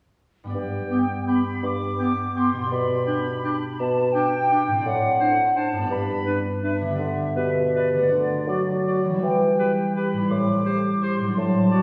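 A wet scoring-stage reverb places this elegant, festive classical excerpt further back in the room, its studio ambience lending a soft glow to a rubato 3/4 in G major that moves between 152 and 182 BPM. A ringing, fingerpicked concert harp opens at 0.4 s with up-front arpeggios, joined by a dark, smooth-topped bassoon accompaniment and a pure, tongued flute group singing with vibrato. At 0.9 s a clear oboe and a mellow, soft-attacked clarinet add distant, roomy second lines as the harmony travels from G through D7/A and Em to a closing Am7.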